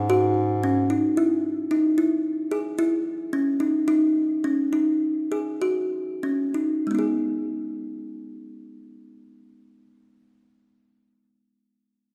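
Pensive and hypnotic, this short passage cut from a longer contemporary chamber piece moves in an uneven 5/4 with a straight feel, in G# minor at roughly 92-112 BPM. A bright bass clarinet in classical style opens alone on a low G#2, but it sounds only for the first second before giving way. From 0.1 s to 11.4 s, the kalimba carries the music with up-front arpeggios between G#3 and G#4, its plucked, woody tone taking a crisp thumbnail edge and short decay. The harmony begins on G#5, drifts into a chordless stretch at 1.2 s, reaches D#m7 at 3.9 s and settles on G#m at 6.9 s. The pace slows from 2.2 s until 6.9 s, where a new section begins. A moderate scoring-stage reverb lends the small ensemble a sense of spacious depth.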